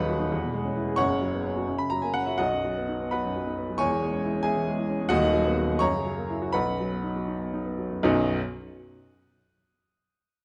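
Moving in a flexible 6/8 with rubato, this classical virtuoso piano study passage, cut from a longer piece, has a sparkling, heroic mood. A warm, natural baby grand piano plays solo and sits up front across a broad range from the deep bass into the high treble, moving through a progression that settles on B at 2.4 seconds and again at 6.5 seconds. The music slows down from 4.5 to 8.0 seconds before a new section begins. Close, detailed microphones capture the piano within a moderate recital hall reverb.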